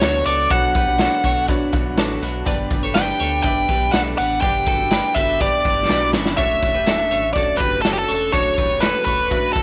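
A straight 4/4 beat at 123 BPM from a gritty, saturated garage drum kit, with a punchy kick in a pumping small room, drives this wistful, restless snippet of jangly indie pop, where a nasal, overdriven lead guitar with a parked wah carries the melody up front over a deep sub bass with octave, twangy twelve-string arpeggios with tape echo, a dark, lo-fi guitar through a small old amp with spring reverb, and a woody, slightly detuned upright piano with audible action noise; the piano adds a fill from 1.0 to 2.5 seconds, and the drums play a fill just before the harmony moves from Bmadd9 and G to Dmaj7 at 6.4 seconds.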